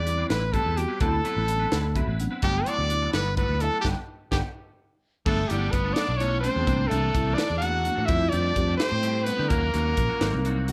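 Electric jazz fusion in G major at 85 BPM in a straight 6/8, bright and slick, where a brilliant, forceful trumpet with light vibrato, scooped notes and slapback echo leads over a biting overdriven guitar second line, twangy chorused guitar stabs in the background, a growly, up-front fretless bass, a mellow phaser-tinged tine electric piano adding fills, and a crisp drum kit with a high-tuned snare and punchy kick that drives a fill under a band accent from 3.8 to 5.3 seconds, in a dry recording cut from a longer piece.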